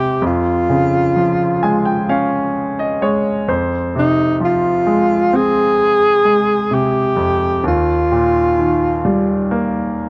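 A breathy alto saxophone carries the melody up front in this melancholic, emotional pop excerpt, its subtone playing smooth at the top with a light vibrato and a jazz-styled, soloistic phrasing that stays between Eb4 and Ab4 until it stops at 9.5 seconds. Alongside it, a clear concert grand piano, also up front, accompanies across a broad span from Eb2 to Ab5, sounding present and polished with a deep bass and short sustain. The piano plays a fill from 1.2 to 3.9 seconds. At a slow 65 BPM in a straight 4/4, the music sits in F minor, moving from Db over F to F minor and then to Eb. Light reverb and a dark, warm production give the short passage, cut from a longer piece, a somber glow.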